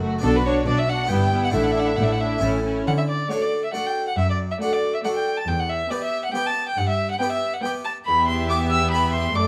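A smooth, even solo violin with vibrato sings up front in this festive, lively baroque-style concerto movement in triple time, cut from a longer piece, over a full, plucked harpsichord with two sets of strings, a smooth viola section, a focused cello section, a bowed double bass section that stops at 2.8 seconds, and two violin sections in the background carrying the melody and a second line, heard through moderate recital hall reverb with close, detailed microphones and vinyl crackle.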